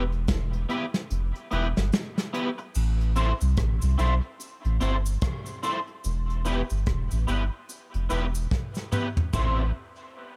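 A studio reverb gives this short dub reggae excerpt an airy space, with the bass, drums and guitar sitting up front. The mood is meditative and hypnotic, moving at an unhurried, swung pace over a slow shift between E minor and A minor. A deep, round sub bass anchors the low end with a soft, sustained tone. A twangy electric guitar, picked and slightly broken up, carries the accompaniment through an ensemble chorus and dub echo. A soft brush drum kit with a tight kick and medium-tuned snare opens in a break, with the kick dropping out after about a second, then the distant cabasa drifts in from the background at 2.7 seconds. A drum fill from 8.5 to 9.3 seconds leads back to A minor as the excerpt closes.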